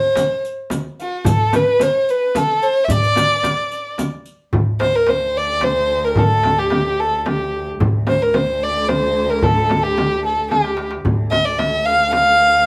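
In a straight 3/4 lilt, this festive, passionate cut from a longer Arabic maqam ensemble piece sets a crisp, metal-shelled darbuka and a deep frame drum played close with soft hands under an up-front, woody solo violin melody rich in vibrato, with a dry riq's dark jingles heard only until 4.3 s, a distant bowed cello drone entering at 4.6 s, a drum fill at 10.5 s, and the live band captured together in one room with a short, wet studio reverb.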